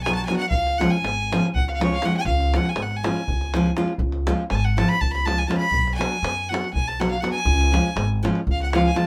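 In a 7/8 at 242 eighth-note beats per minute, this restless, fiery Balkan wedding-band fragment in C# Phrygian dominant moves between B minor and C# chords over a small, moderately reverberant room. A clear, earthy bowed fiddle with light vibrato carries the melody up front as a solo for the full 9.1 seconds, while a bright, full-bodied fingerpicked nylon-string guitar accompanies close by. Underneath, a woody, growly pizzicato upright bass holds the low end, and a tight davul keeps the percussion a little further back.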